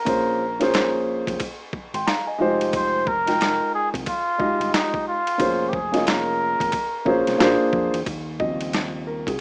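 A veiled, cup-muted trumpet carries a soft, lightly vibratoed jazz melody up front until 7.4 s in this nocturnal, smoky, swung jazz-hop passage cut from a longer hip hop piece, over a dark, intimate grand piano with audible action noise that takes a brief solo from 8.1 s, a round, punchy fingered electric bass and a gritty, pitched-down boom bap sampler-style kit with a thumpy kick, set in a rough home-demo mix with a small-speaker sound and moderate studio reverb.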